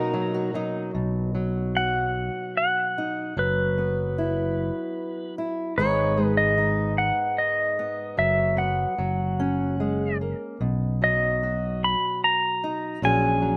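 This acoustic folk-pop ballad moves at an unhurried 74 BPM in 3/4 time in B major, with an intimate, heartfelt mood. Up front, a bright, clean pedal steel guitar carries the melody, played with fingerpicks and slide, with volume swells and a compressed tone. Alongside it, a fingerpicked steel-string acoustic guitar gives warm accompaniment touched by a slapback echo. A dark, woody string section holds soft bowed chords only until 0.9 s, and a very quiet, ringing concert harp adds arpeggios until 3.3 s. At the moment the strings drop out, a fingered electric bass, direct and amped, enters and anchors the low end for the rest of the passage. The harmony moves from Bmaj7 through F#7sus4 and G#m before returning to Bmaj7, and the dry outdoor sound, with little reverb, keeps the parts close and immediate.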